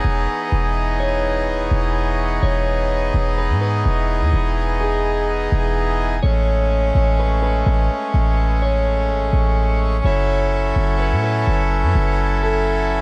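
Dreamy and floating, this atmospheric cloud-rap excerpt moves in a half-time feel as a deep, boomy 808-style bass with a sine body, a noise layer and a fast, decaying attack sits up front beside reedy, mid-forward accordion chords moving from Emaj7 to Amaj7 at 6.2 seconds and F#m7 at 10.0 seconds, while a dark, slightly broken-up electric guitar melody, fingered and softened by a low-pass filter and delay, drifts in the background under light reverb.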